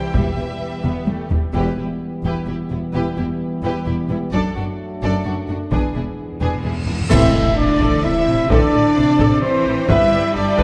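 Set in a spacious, wet scoring-stage reverb, this dark, heroic cinematic orchestral excerpt moves at 129 BPM in 3/4, with close, dry taiko struck with hard sticks and mellow French horns and trombones holding sustained chords under lush bowed strings, where violins carry a melody and a second line over background violas and rich cellos and double basses on the bass in E minor. Soft-mallet timpani enter from 0.1 s and again from 5.7 s, while bright cymbals and concert bass drum join from 4.3 s, and a huge cymbal swell and sub drop build into an impact at 7.1 s, where the music turns to A minor. There, mellow, vintage trumpet stabs enter alongside an airy, very quiet distant flute line.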